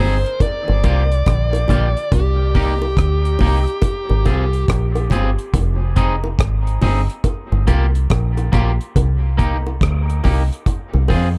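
Dub reggae at a slow 70 BPM in G phrygian, swung on the sixteenths, with a meditative, heavy mood in an echo-heavy mix with small room ambience. A deep fingered electric bass sits up front, dark, round and punchy with a foam-muted, direct-and-amped tone, alongside a dry, acoustic drum kit whose tight kick, hi-hat and rim click are also placed forward. A bluesy overdriven lead guitar, dark and distorted with dub echo, carries a brief picked melody that ends at 4.7 seconds, while a twangy electric guitar at the edge of break-up plays accompaniment through the echo for nearly the whole clip. A bright, clean guitar through an envelope filter adds very quiet picked arpeggios in two short bursts, returning at 9.0 seconds. High-tuned bongos played with hard hands sit in the background, their tight hits trailing dub echo, as the harmony cycles through Gm7, Cm7, Ab6 and Fm7 in this fragment cut from a longer piece.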